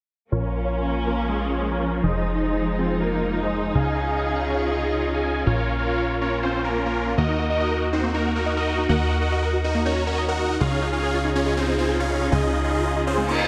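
Trance at 140 BPM in Bb minor, euphoric and soaring, this excerpt from a longer piece sets huge, lush supersaw chords up front carrying the melody through phaser, tape echo and a low-pass filter sweep that runs its full length, over a punchy, funky analog bass with a ring-modulated pluck and a distant, rich symphonic string section holding smooth sustained chords with light vibrato. At 7.2 seconds a tight, driving sequenced synth joins in the background with chorus-tinged arpeggios as the harmony moves to Eb minor, and an electronic reverse cymbal arrives at 13.3 seconds. Light reverb lends a digital ambience to the whole.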